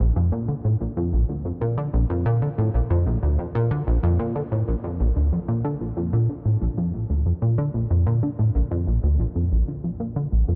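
A lone plucky analog bass opens this ambient excerpt and plays for its full 10.6 seconds, moving between Bb1 and D3 at 93 BPM in a straight 4/4. Its tone is punchy and funky yet mellow, built from sawtooth, square and triangle waves with a touch of ring modulation. Each note has a fast attack and a filter pluck that decays as the sound evolves. A subtle chorus and tape echo color the bass, which sits up front in the mix. A huge ambient reverb with a long tail surrounds it, and the top end is rolled off above 7.9 kHz, lending the piece a luminous, cosmic mood. A new section begins at 9.2 seconds, just before the passage ends.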